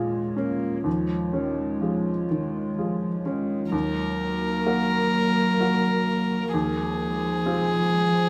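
Moderate room reverb surrounds a small ensemble playing live together in one room, in this fragile, melancholic fragment of a neoclassical piece for piano and strings, cut from a longer work. From the start, an upright piano sits up front with a clear, woody, polished tone and audible action noise, carrying the accompaniment in a rubato triple metre. Alongside it, a warm cello plays a close, intimate second line, bowed sul tasto with light vibrato and a soft attack. A warbling, lo-fi pad of detuned square and triangle tones holds sustained chords with a slow attack and long release, its chorus and built-in reverb lending a dark, nostalgic haze. At 3.7 s a single violin enters up front with the melody, bowed sul tasto in a rich, pure, floating voice.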